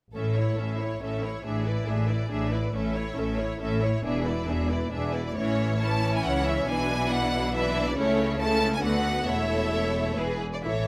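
A symphonic string body opens the recording at 0.1 s: a lush violin section on the second line, an intense viola section in accompaniment, and smooth, even cello and double bass sections sharing the bass, the lower pair set at a distance. A moment later, at 0.2 s, a chamber violin section takes the melody high above, its bowed tone clear and focused, with vibrato, yet it sounds somewhat removed. This is a quick, spirited and graceful classical-period movement in triple metre, played with a flexible, rubato feel. The harmony moves between tonic and dominant chords through the opening half, then turns toward a second section at 5.4 s that passes through inversions and a minor seventh chord before closing on the dominant. Close, detailed microphones and a light reverb frame the string orchestra in this short cut from a longer piece.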